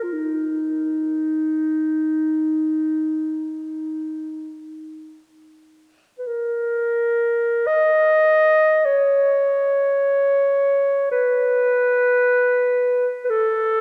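Classical and expressive, this mournful, lonely solo for unaccompanied clarinet unfolds in free time. The mellow clarinet sits up front with a soft attack and smooth top, moving between Eb4 and D#5, its phrases changing character at 6.3 seconds. A moderate church reverb lends a spacious, resonant halo to this short cut from a longer piece, which ends at 13.8 seconds.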